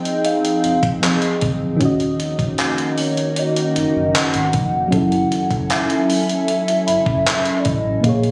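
This short, sensual, late-night slice of contemporary R&B opens with a hollow, woody clarinet-like synth lead carrying the melody over a mellow, round FM electric piano and a glassy, ethereal FM pad. The soft lead has chorus and delay with vibrato, while the vintage electric piano warbles darkly through its chorus and the pad rises slowly into its ensemble chorus and built-in reverb, pumping against the beat. At 0.1 seconds a gated 80s digital drum machine arrives up front with a thumpy kick, hi-hat and handclaps, its tape-tinged, sampler-style sound bathed in gated reverb. A deep, full sine sub bass doubled at the octave joins at 0.6 seconds, sustaining beneath the chords as they move from Fm7 to Ebm7 and on to Gbm7. At 6.9 seconds a soft, pure synth bell glints in the background with chorus and delay, all heard through a roomy digital ambience that sounds captured on a phone and compressed.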